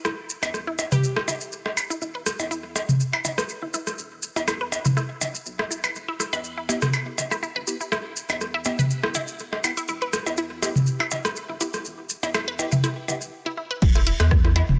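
Swung 16ths at 122 BPM in 4/4 drive this sparse, cool minimal techno piece in E minor, where an overdriven minimal click drum kit of blips, rim clicks and toms sits up front beside grainy maracas and a rubbery, hollow square bass pumping under the sidechain, while a squelchy resonant blip pluck riff with phaser and dub echo runs throughout, a glassy wavetable pluck with chorus appears briefly near the start, muted filtered dub chord stabs with phaser enter at 6.7 seconds, and after a short break a punchy electronic kick drum and an analog drum machine with crash, hi-hat and rim click arrive at 13.8 seconds.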